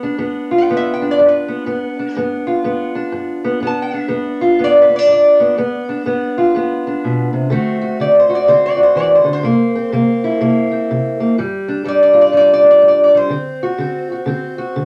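Acoustic country blues with a laid-back, swaggering swing, heard in a short cut from a longer piece. A lap resonator guitar carries the melody from 0.6 seconds, its metallic, nasal slide tone sitting up front and picked with fingerpicks, while a fingerpicked parlour steel-string guitar gives dark, boxy accompaniment in the lower register. The pair moves from G7 through D7, C7 and G5 before landing back on D7, all set in a wet studio reverb.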